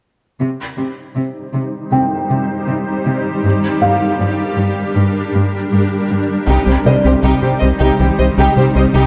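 A rubbery, nasal square bass sits up front from 6.5 seconds in this tense, futuristic hybrid orchestral and electronic film cue at 79 BPM in C minor. It joins a bowed cello section that holds the low end from 0.4 seconds, a cloudy, evolving granular pad of sustained chords, and a boxy felt-muted upright piano with tape echo. A lush violin section with vibrato, a distant viola section with portamento, a ringing harp-like synth pluck with chorus playing arpeggios, and barely audible taiko drums then fill out the later passage inside a moderate scoring-stage reverb.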